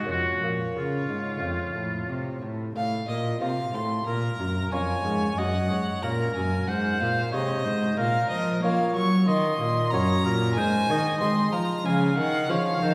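Introspective and solemn, this Baroque-style sonata movement in Bb minor moves at 92 BPM in a straight 4/4, with a bowed violin carrying the melody in a warm, expressive voice full of vibrato and portamento while a clear oboe with light vibrato sings the second line beneath it. A mellow, fingerpicked lute with gut and doubled strings adds delicate accompaniment, and a dark, close cello anchors the bass, its bowing also rich with vibrato and sliding expression. The ensemble sits further back in a reverberant concert hall, the harmony turning at 2.8 seconds from F toward a sequence through Gb, Ebm7 and Ab before settling on Dbmaj7 in this fragment cut from a longer piece.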